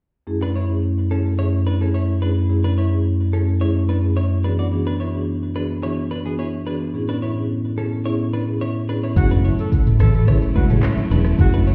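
Afrobeats at 108 BPM in F# minor, mellow and hypnotic, opens with an up-front marimba and a bright, twangy clean electric guitar riff drifting with warbly pitch and digital delay over F#m7, E7 and Amaj7, until at 9.2 s a round, dark fingered bass, a gritty electronic drum kit with deep kick, metallic hats, handclaps and shaker, lush plate-reverbed strings with sidechain pumping, and a distant breathy alto saxophone melody join, followed at 10.0 s by very quiet hard-hand congas, the whole excerpt sounding muffled as if heard through a wall in a stone room.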